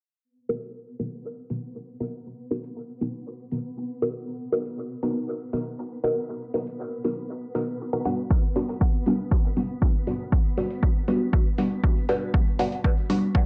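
A muted, detuned chord stab sits up front in this hazy, hypnotic dub techno passage at 119 BPM in 4/4. It blends sawtooth and square waves over a sub octave, with a fast-attack filter pluck and short decay, and a phaser and dub echo on it. The stab spans G3 to A#4 on a Gmaj7 chord, and a filter sweep shapes it from 0.2 seconds to the end. Beneath it, a grainy, flickering texture built from detuned triangle tones holds a sustained B3 with slow attack and long release, carrying its own reverb and a sidechain pump. A quiet, overdriven analog hi-hat ticks along from the start, and a punchy, overdriven analog kick drum enters at 8.3 seconds. The whole mix sits under light reverb and a low-pass filter, and the clip is cut from a longer piece.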